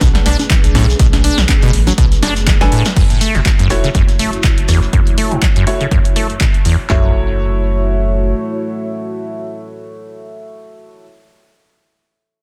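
Acid house at 122 BPM in F# minor with a 16th-note swing, hypnotic and driving, opens on a drop where a squelchy, resonant saw acid bass riff with tube saturation and delay rides over a round, deep analog bass, a punchy, dry drum machine kit and a tape-tinged second kit with congas, hats and rim clicks, a grainy shekere in the background, and a moody, detuned pad pumping under sidechain, before a drum fill at 2.5 seconds leads in clear, worn baby grand piano stabs through a low-pass filter and delay as the chords move from Bm7 to F#m7 at 3.0 seconds. The drums and acid bass drop out near 7.0 seconds and the round bass by 8.3 seconds, leaving pad and piano to carry on to 11.0 seconds in a dense, heavily limited mix with light reverb.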